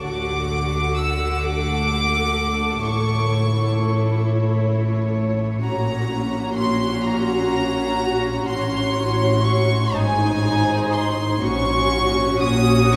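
A warm, up-front symphonic violin section carries the melody high in its range, its bowed, sul tasto tone soft in attack and floating above the ensemble in this slow, lyrical excerpt from a romantic movement for string orchestra. Set in A major and a rubato 6/8 at 42 BPM with uneven beats, the passage moves through chords of D, A, Gb/Bb, Gbm/A and Ab across its 13 seconds. Beneath the melody, a dark chamber violin section sings a pure, smooth-topped second line, while a woody, lush viola section adds vibrato-rich accompaniment. A rich cello section and a dark, close double bass section share the bass, both bowed sul tasto with a gentle, floating quality. All five sections play throughout, bathed in a long, wet cathedral reverb that gives the strings the spacious glow of a church or concert hall.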